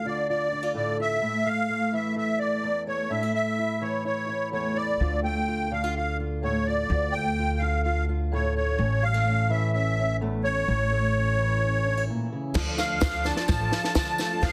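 A reedy, shimmering musette accordion carries the melody over a boxy, old-stringed fingerpicked ladder-braced acoustic guitar in this wistful, stirring indie folk piece in D harmonic minor at 127 BPM, with a growly pizzicato upright bass joining at 5.0 seconds, and after a brief break the guitar gives way around 12.6 seconds as the arrangement builds with a punchy, dry cocktail drum kit with dark cymbals and a high-tuned snare, clear, slightly detuned upright piano arpeggios, and, in the background, a bright, octave-doubled twelve-string guitar and a jingly tambourine, all within light small-room reverb and a dense, heavily limited master.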